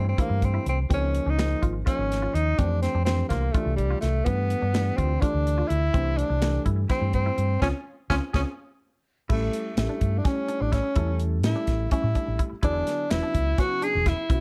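Electric jazz fusion in a straight 7/8 at 251 BPM, slick and funky, where a breathy, vibrato-laced tenor saxophone with slapback echo sings the melody up front over a round, punchy fingered bass and a tight funk kit entering at 0.2 seconds, while a mellow baby grand piano with audible action noise comps beneath and a bright, twangy clean guitar with chorus and slapback echo adds stabs in the background, the band hitting an accent at 7.6 seconds, followed by a drum fill at 7.9 seconds and a piano fill at 8.6 seconds, before the harmony shifts to A7 at 9.3 seconds in this dark, lightly reverberant cut from a longer piece.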